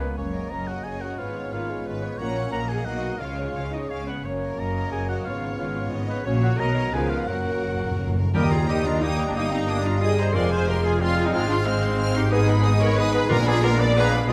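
A rich, focused violin section carries the melody in this fast, stormy romantic movement for symphony orchestra, a passage cut from a longer piece, moving at 180 BPM in 3/4 and starting in F# major before shifting to Eb major at 8.3 seconds. Around it, a clear, close-miked oboe, a bright clarinet, a hollow, distant flute ensemble and a very quiet second violin section with a soft attack weave second lines. Lush violas and a present bassoon fill in the accompaniment, while a tight French horn section and a roomy trombone section hold sustained chords. Smooth-topped cellos and an expressive double bass section anchor the bass. Timpani punctuate the music, with a fill from 7.3 seconds leading into the new key, where a trumpet section enters with stabs and the harmony darkens through minor chords toward a tense dominant. The whole orchestra sits in a moderate scoring-stage reverb that lends depth to the dramatic sweep.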